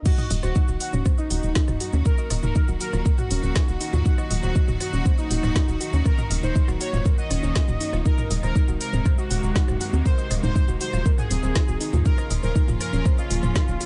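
A steady pulse at 120 BPM drives this dramatic, melancholic melodic techno drop in Eb dorian, where a deep, up-front electronic kick and a deep house kit with woody snare and smooth hats sit in a small room, a tight, punchy sequencer bass pumps beneath, a soft, round pluck spins dark arpeggios through chorus and analog delay, clear symphonic strings hold smooth chords, and a bold, fat analog synth brass carries the melody with vibrato and echo as the harmony moves from Ebm to Abadd9/Eb at 8.1 seconds and Bbm/Eb at 12.1 seconds in an echo-heavy, dry mix.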